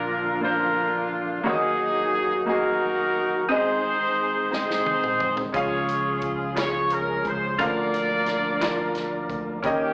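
A warm, up-front horn section carries the melody with light vibrato over clear baby grand piano and a mellow, round tonewheel organ on slow rotary, both heard from the start in this reverent, hopeful slow gospel excerpt in 6/8 at 59 BPM, moving from Bb through Ebm and Ab to Db, with a natural country drum kit entering on a fill at 4.5 seconds, fingered electric bass joining at 5.5 seconds, and distant group handclaps arriving at 6.6 seconds, all carrying the club reverb and AM radio sound of a live gig heard through a venue's PA.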